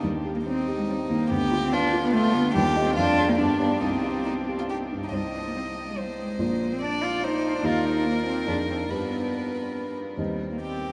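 A rich, airy-bowed violin carries the melody up front in this stormy, urgent classical-period piano trio movement in C minor, taken at a quick 142 BPM in 3/4, with a warm cello shaping a soft-edged second line and a dark, mellow baby grand with audible action noise supplying the accompaniment, all three playing throughout this excerpt cut from a longer piece and heard in a vast, echoing space.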